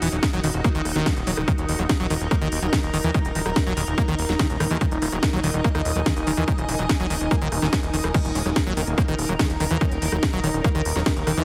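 This intense, driving psychedelic trance excerpt in Eb minor opens with a fat, detuned analog sawtooth bass sitting up front, while a squelchy, resonant acid bass riff with filter sweeps, chorus and digital delay runs further back. Above them float two pads: an evolving, morphing wavetable pad holding sustained chords with phaser and ensemble chorus, and a mellow, airy pad that reaches higher. A techno drum kit with a cracking snare, smooth hi-hats, rim clicks and crash cymbal drives a straight 4/4 at 144 BPM, and at 0.2 seconds a heavy, overdriven electronic kick enters, sitting up front in the mix. Sidechain pumping gives both pads and the acid bass a rhythmic rise and fall. Between 8.8 and 10.6 seconds, a very quiet wobbling formant-sweep bass adds a faint second line. The whole mix carries light reverb and a heavily compressed, radio-like sound.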